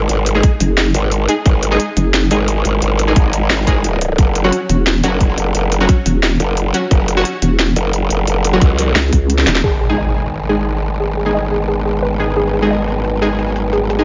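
A dry, dark-toned slice of tense, futuristic technical drum and bass, where a growling, overdriven bass and a nasal vowel-sweep wobble bass churn under a tight, up-front kick, a cracking snare and crisp hats, while bold orchestra-hit-like stabs ring out through reverb and delay until, after a drum fill, an electronic impact at 9.6 seconds brings in a moody analog pad and soft, round plucked arpeggios that pump against the beat.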